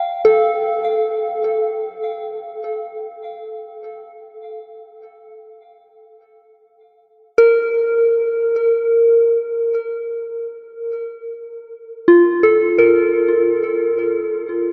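A soft, pure FM synth bell plays alone for the full 14.7 seconds, its fast-attack, decaying notes ringing out between F4 and G5 through chorus, phaser and delay, sitting up front in a vast, echoing space with a huge ambient reverb that lingers for 8.6 seconds. This serene, spacious ambient excerpt drifts in free time, tuned to A4 = 437 Hz, with the bell's long release melting into the wash. The harmony rests on Fadd9/A before moving to Bb5 at 6.8 seconds.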